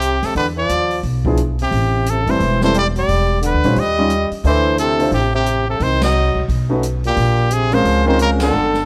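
A brilliant, forceful trumpet leads this short small-group swing and bop excerpt, its scooped notes and light vibrato carried over a punchy, vintage-toned trombone second line, a woody, thumpy pizzicato upright bass and an acoustic drum kit with dark cymbals and a boomy kick. A concert grand piano with audible action noise and long sustain joins the accompaniment at 1.3 s, adding an intimate, sophisticated glow to the chromatic seventh and ninth chords. The full band hits accents at 6.0 and 8.4 s in a close, detailed recording with light reverb.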